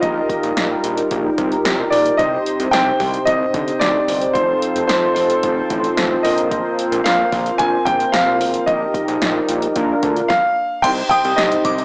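Synth-pop with a bright, nostalgic mood at 111 BPM in Eb major, cut from a longer piece, where an intimate, up-front concert grand piano with audible action noise carries the melody over round, brassy synth brass and a shimmering, chorused pulse-width pad sitting in the background. A fat, detuned analog bass and an overdriven deep house drum kit with a deep kick and punchy snare drive the groove through chords moving from Ebadd9/Bb through Cmadd9, F7 and Bbsus2. A crystalline FM synth bell enters at 10.8 s as the harmony lands on Cm, and the piano, brass, pad, drums and bell carry a cassette tape coloring, with spring reverb and small-speaker sound giving the whole a homemade feel.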